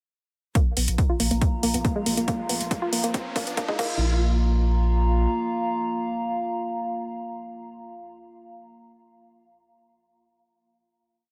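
A straight four-on-the-floor kick, punchy and up front, drives this dark and industrial piece of peak-time techno from 0.6 seconds. A programmed techno kit adds metallic closed and open hats, a backbeat and crash, its hats and cymbals pumping against the sidechain. A deep, saturated sub bass sits just as far forward, a sine-based low rumble between the kicks that pumps through a low-pass filter and holds a single low note. Over it a woody, wave-folded pluck repeats a 16-step sequence with a moving notch and a noise layer, its chorus and digital delay giving it a warbling, vintage character while a filter sweeps across it through the build. From 1.2 seconds a nostalgic, lo-fi, tape-like pad joins, square- and triangle-based with a slow attack, chorus, its own reverb and sidechain pumping. An electronic riser enters at 2.0 seconds, the drums play a fill from 2.3 seconds, and the build gives way at 4.0 seconds to a final chord on the pad. 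The whole mix carries light reverb and a high-pass filter, and the instruments are tuned to A4 = 438 Hz.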